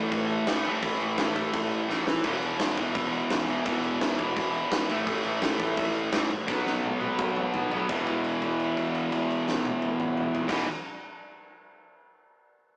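A tight, up-front distorted guitar riff drives this rowdy, rebellious punk rock excerpt at 170 BPM alongside a compressed, double-tracked distorted guitar in the background and a very quiet, sludgy overdriven guitar, moving through A5, E5 and B5 power chords. A growly fuzz bass sits underneath while a big acoustic rock kit in a bright stone room pounds with a fat snare, punchy kick, crashes and toms, throwing in fills at 1.9 s and 6.5 s before the band lands on E5 at 7.9 s for a held note. The sound is rough and rehearsal-room raw, with tube saturation, a small-speaker character and light reverb.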